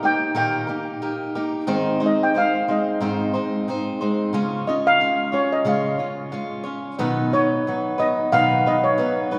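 Acoustic folk at 90 BPM in a straight 4/4, this nostalgic fragment cut from a longer piece sets a shimmering, mellow steel pan melody struck with soft rubber sticks up front over a dark, woody picked steel-string acoustic guitar on old strings, moving through Eb/Bb, Ab, Db and B, and bathed in a long, wet church reverb.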